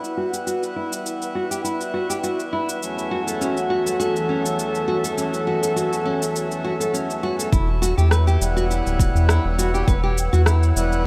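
Set in a light reverb, this short cut from a longer piece of organic downtempo has a hypnotic, gently swung feel. A reedy, breathing harmonium and an ethereal pad with an ensemble chorus sit under fingerpicked nylon-string guitar arpeggios, both harmonium and pad pumping against the beat. The full-bodied guitar and the background pad both carry a filter sweep through the opening stretch. Overdriven electronic cabasa and rim click keep time while a glassy texture of drifting overtones hovers high above. At 3.4 seconds a breathy, flute-like synth lead with vibrato and delay sings a brief melody. At 7.5 seconds a round, deep, up-front analog bass and a punchy, overdriven electronic kick drum arrive, grounding the mellow harmonies.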